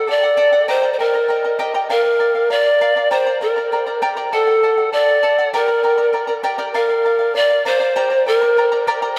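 Moving in a straight 2/4 at 99 BPM, this short Andean folk excerpt in G minor carries a wistful yet festive mood. A breathy bamboo pan flute sits up front with the melody, its mellow tone shaped by a soft attack, a touch of chiff, vibrato and rolled-off highs, with an unsteady, human quality and a tape echo trailing its phrases. Alongside it, a fingerpicked charango provides accompaniment at a lower level, its bright double strings shimmering with some octave-doubled courses. The harmony moves through D, Eb, Bb, Gm and back to D and Gm, and the phrase repeats from 6.8 seconds as a second statement of the same section. A huge ambient reverb with a 4.8-second tail soaks the mix in a dreamy haze. The flute drops out at 8.9 seconds, just before the charango finishes at 9.2 seconds.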